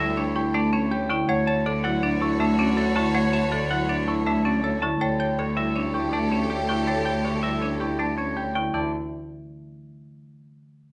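A brisk 161 BPM pulse in 5/4 with a straight feel drives this bright, propulsive stretch of minimalist classical pattern music in D major, cut from a longer piece, as two hard-mallet marimbas, one woody and close-miked, the other percussive, lay down accompaniment and arpeggios over a distant, rich cello holding a D2 bass. A clean, twangy electric guitar carries the melody up front, while a lush, intense violin section sustains chords until 8.5 seconds and a delicate, bell-like celesta joins at 0.4 seconds with arpeggios in the background. The harmony moves between A7sus4 over D and Dmaj7 before settling on a bare D5 at 8.7 seconds, all within a moderate large-studio reverb.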